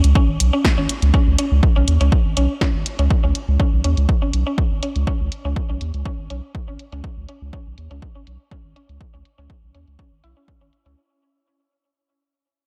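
Quirky and clinical, this short excerpt of minimal techno runs at 122 BPM in a straight 4/4, tuned to A4 = 444 Hz and fading out across its full 11 seconds. A saturated sub bass sits up front, deep and thick with a sine body and fast attack, sustaining between G#1 and D#2 under sidechain pumping. An electronic kick drum, punchy and overdriven, hits from 0.2 seconds, while a punchy analog drum machine supplies hi-hat and snare with overdrive and low-pass filtering on both. A mallet-like synth pluck carries the riff between C#4 and E4, its bright, woody, round tone with a noise layer and short decay treated with subtle chorus, tape echo and pumping. The harmony rests on a C#5 chord, and light reverb lends a digital ambience to the spare groove.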